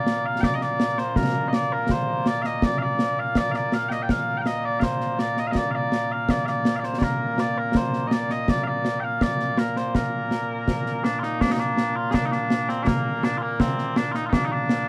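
A straight 2/4 pulse at 82 BPM drives this stirring, proud excerpt of Scottish pipe music in Bb major, where mellow small bagpipes carry a sweet, continuous solo melody with vibrato, up front, while close, acoustic concert snare and bass drums with dark cymbals keep time under light reverb in a dark production.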